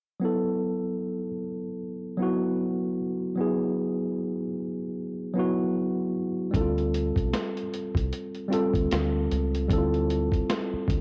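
A worn, slightly out-of-tune tine electric piano sits up front alone from 0.2 seconds, voicing mellow F#m7 chords in this reflective, melancholic lo-fi hip hop excerpt with a gentle swing. At 6.5 seconds the harmony moves to Dm7 as a dark, round, foam-muted dub bass and a muffled, compressed sampler-style drum kit enter together, the kit carrying a thumpy kick, a medium-tuned snare and hi-hat with vintage 12-bit grit and cassette tape warmth. Light reverb and digital ambience frame this cassette home recording.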